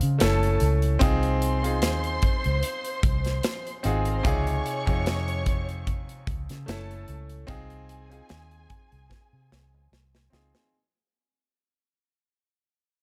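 Lush 1970s-style soul with a gently swung, warm feel, where a clear, smooth grand piano comps over a dark, round muted electric bass and a punchy, polished drum kit, while a distant violin section adds a soft-edged, vibrato-rich second line with expressive portamento, the whole passage fading out throughout as a drum fill arrives at 9.1 seconds.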